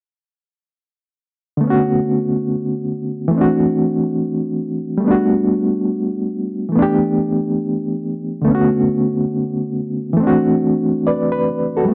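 A barky, reedy electric piano sits up front in this reflective, nostalgic hip hop excerpt, its bright tone lightly overdriven and pulsing with fast tremolo through built-in speakers, colored by cassette tape. Entering at 1.6 seconds and playing until 11.9 seconds with a swung sixteenth-note feel, it moves through Bm7, D7, Gmaj7 and A7sus4 chords. The production is dark and warm, set in a wet small room.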